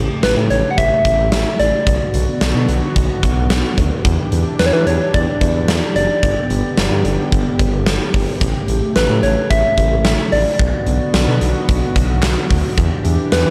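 Cool and melancholic, this synth-pop excerpt moves at 110 BPM in a straight 4/4, set in E dorian with the tuning pitched slightly high at A4 = 441 Hz. A warm, detuned analog pad with a soft attack and chorus holds sustained chords from the opening, while a smooth synth bass mixing sawtooth and triangle tones sits mellow and sustained beneath it. At 0.2 s a soft, struck FM lead enters with a round, keys-like tone that decays gently, colored by chorus, vibrato, slapback echo and analog delay. A huge arena drum kit arrives at the same moment, up front with a punchy kick, fat snare, hi-hat and handclaps. The harmony cycles through A7, Bm, Em7 and G before returning to A7, Bm and Em7. A moderate, lush hall reverb gives the whole piece a big arena sound.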